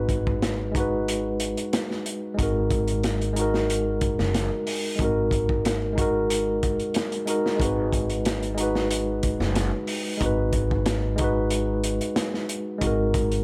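A clean tine electric piano sits up front through a combo amp, its G# minor chords shimmering with harmonic tremolo, tape echo and the grit of a vintage 12-bit sampler as they move between G#m7 and D#m in this hypnotic, cinematic trip hop passage at 92 BPM with a light 16th-note swing. Beneath it, a woody, thumpy upright bass with gut strings is plucked low, while a crunchy, saturated breakbeat kit, dark with a rolled-off top, brings a tight kick, medium-tuned snare and hi-hat in from 0.1 seconds. A moderate spring reverb lends the whole 13.4-second cut from a longer piece a sense of space.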